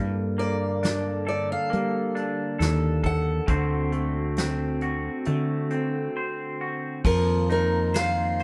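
Heard as a band playing live in one room with moderate studio reverb, this intimate, reflective acoustic folk-pop ballad moves at 68 BPM in 4/4 and is cut from a longer piece. A twangy, slightly broken-up electric guitar through a small old amp and a round, dark fretless bass sit up front from the start, while a swirling, detuned analog pad with phaser and chorus holds sustained chords in the background. At 0.4 seconds a boxy, picked ladder-braced acoustic guitar takes the melody over a soft brush kit with a punchy kick; the harmony moves from Bbmaj7/G to D7, a break arrives at 6.2 seconds, and a new section opens on F7sus4 at 7.0 seconds.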